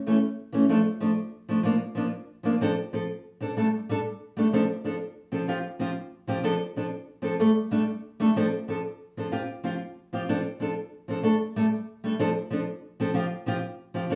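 A fingerpicked steel-string acoustic guitar opens the recording at 0.1 s and carries it alone until 14.2 s, in a bittersweet, danceable highlife feel in D minor at 125 BPM, counted in dotted quarters in 12/8. Its tone is dark and up front, with audible finger squeaks that add intimacy to the concert-style sound, and it stays between E3 and A4. A short opening passage moves from A through Dm to Bb/F. At 2.6 s a longer section settles into a repeating cycle of Dm7, Gsus2, Dm7 and Csus4 that gives the piece its gently swaying, wistful pull. A wet small-room reverb surrounds the guitar with a close, live ambience, and the clip is cut from a longer piece.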